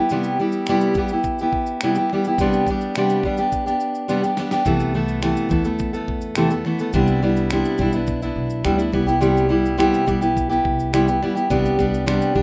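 A carefree, sunny acoustic pop excerpt in a straight four, carried by an up-front fingerpicked steel-string guitar with a full-bodied jumbo tone that plays from the very start. Almost at once a dusty, sampler-style drum kit joins beneath it, gritty and compressed, with finger snaps, shaker, a medium-tuned snare and a thumpy kick sitting well back in the mix. After a short drum fill, a pizzicato upright bass enters at 4.7 seconds, adding a woody low end. The chords move from Cmaj7 through G/C, Amadd9/C and Em7 before returning to Cmaj7 and landing on G. A moderate small-room reverb and a rough home-demo mix frame the whole thing, and the passage is cut from a longer piece.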